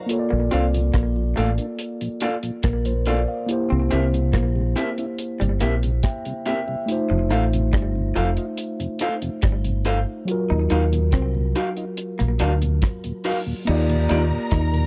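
A round, punchy fingered electric bass sits up front and anchors this smooth, sweet lovers rock reggae excerpt, its dark dub tone carrying the low end throughout. A dry, tight drum kit with a rolled-off top supplies kick, rim click, hi-hat and crash. Two electric guitars run through a small old amp: one plays a slightly broken-up, lo-fi riff with tube saturation and slapback echo, while the other adds compressed, picked stabs. A mellow tine electric piano keeps a clean accompaniment going with its own slapback echo, stepping forward with a fill between 5.6 and 6.9 seconds. A tonewheel organ with key click and a slow rotary speaker hums in the background. After a brief touch at the very start, a lush bowed violin section returns at 13.7 seconds with smooth vibrato over an Ebmaj9 chord, all captured in a close, dry 1970s-style studio sound.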